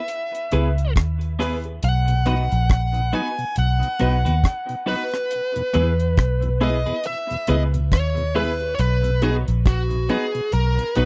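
Up front, a smooth, dark overdriven lead guitar carries an uplifting, laid-back roots reggae melody in B major at 69 BPM with swung sixteenths, its dub echo trailing over a deep, dry drum kit of tight kick, hi-hat and rim click, a round, foam-muted vintage bass, a clean, scooped electric guitar with spring reverb and dub echo, brilliant, woody upright piano stabs, and a background tonewheel organ with key click and slow rotary speaker entering at 2.1 seconds, all captured in a close, dry 1970s-style studio sound cut from a longer piece.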